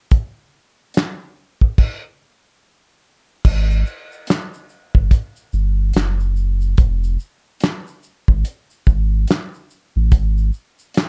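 A dry, dark mix puts a mellow, nostalgic lo-fi hip hop groove up front, cut from a longer piece and set at a lazy 72 BPM with a swung 16th-note feel. A cloth-damped, thuddy acoustic kit in a small room carries it, with a tight kick, fat snare, dark cymbals, hi-hat, shaker, handclaps and crash, and it pauses for a break from 1.8 seconds. A deep, round sine sub bass with a fast attack and long sustain enters at 3.5 seconds to anchor the second section.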